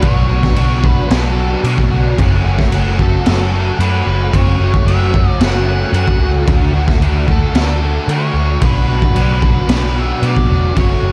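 A raw garage drum kit sits up front in this brooding, melancholic shoegaze and dream pop excerpt, its boomy kick, high-tuned snare and crash cymbal sounding saturated and gritty with a rolled-off top in a small room. At 112 BPM in a straight 4/4, a vintage muted picked electric bass holds the low end with a round, punchy, foam-muted tone between E1 and D3. A biting overdriven guitar, double-tracked and thickened by ensemble chorus, plays the riff through the whole clip. Above it, a dark octave-fuzz lead guitar carries the melody from A4 to F#5, sitting lower in the mix and colored by distortion and slapback echo. The harmony moves from Bm7 to F#m, then Dmaj7 at 6.5 seconds and Bm at 8.6 seconds, all wrapped in a dark, warm production with small room ambience.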